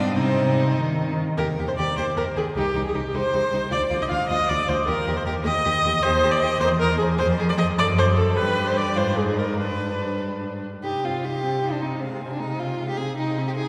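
A quick classical-period movement for string quartet, cut from a longer piece, moves in a rubato 6/8 at 102 BPM with an urgent, stormy mood, starting in E-flat major and turning to C minor from 6.0 seconds. The first violin carries the melody with a rich, focused, vibrato tone, though it sits very quiet in the balance. The second violin plays a smooth, even second line, and the viola, clear and close up front, supplies the accompaniment. The cello anchors the bass with a focused, vibrato sound, also placed up front. The harmony grows restless through augmented and diminished-leaning colours such as Caug7/E and D7/F# before settling on G and returning to C minor at 10.8 seconds. A wet cathedral reverb with a long tail sets the quartet further back in a resonant hall.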